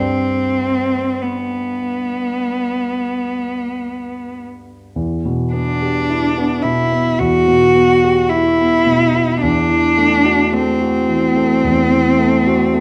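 Serene and lyrical, this romantic classical excerpt for cello and grand piano unfolds in a slow, rubato 4/4 at 46-55 BPM, with a rich, expressive bowed cello up front singing the melody with vibrato and portamento over a natural-sounding grand piano accompaniment, also close at hand, both bathed in a recital hall reverb of 1.8 seconds, as the harmony moves from G major to E minor at 5.0 seconds and reaches F#m7b5/E at 9.4 seconds, all tuned to A4 = 441 Hz.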